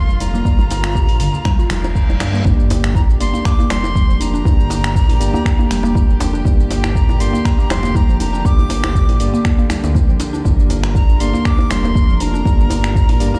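Afro house at 120 BPM in G minor with a hypnotic, driving 16th-note swing: a breathy, bright jazz flute carries the melody through dub echo over warm bowed strings with a reedy gut-string tone, a dark, rumbling detuned saw bass, and woody, mallet-like synth pluck arpeggios coloured by chorus, phaser and a filter sweep, with sidechain pumping on the strings, bass and pluck. A tape-toned deep house kit of finger snaps, hi-hat and shaker sits with a deep, up-front electronic kick, soft-handed djembe and ringing congas that drop out at 2.2 seconds, while a reverse cymbal from 1.8 seconds and a sub drop lead into the drop at 2.5 seconds. There, a clean tine electric piano enters with tremolo stabs through a combo amp, and the whole mix rings out in a bare room with large studio reverb.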